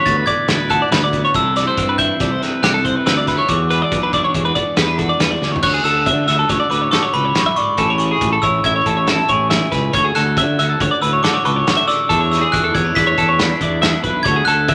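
In a straight 5/4 at 139 BPM, this bright, wistful math rock and midwest emo excerpt in D lydian sets a sparkling, bell-like glockenspiel melody played with brass mallets over two clean, picked, compressed twelve-string electric guitars (one an up-front accompaniment, the other twangy arpeggios in the background), a growly, fuzz-overdriven fingered bass and a loose indie drum kit with a punchy kick, dark cymbals and a pumping room sound, whose fill at 5.4 s leads into a second section at 5.6 s moving through Dmaj9, Amaj7 and E7sus4, the whole mix sitting in a moderate large studio reverb.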